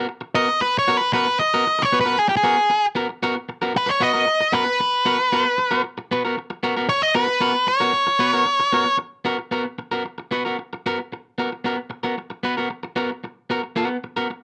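Funk with a cool, hypnotic feel at 114 BPM in a straight 4/4, where a compressed, picked electric guitar on the edge of break-up opens on an F#add11/B chord and plays accompaniment throughout, while a dark octave-fuzz lead guitar, picked and up front, takes a distorted solo melody from 0.4 s to 9.0 s before the accompaniment carries on alone to 14.3 s, all set in a light reverb.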